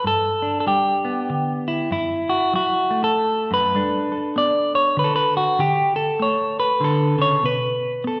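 A clean electric guitar opens this folk fragment alone and stays up front, its picked notes warm and twangy as they ring into a recital hall. The mood is nostalgic and warm, carried in a lilting 3/4 with a gentle swing on the eighth notes. The guitar ranges from F#2 up to D5, moving through G, F#m7 and Gadd9 before settling onto a D5 chord at 5.6 seconds and a B5 chord near 7.4 seconds. A generous, wet hall reverb with a 1.5-second decay surrounds the instrument and gives it a churchlike, spacious glow. Tuned slightly sharp to A4 = 441 Hz, the passage is a brief 8.2-second slice cut from a longer piece.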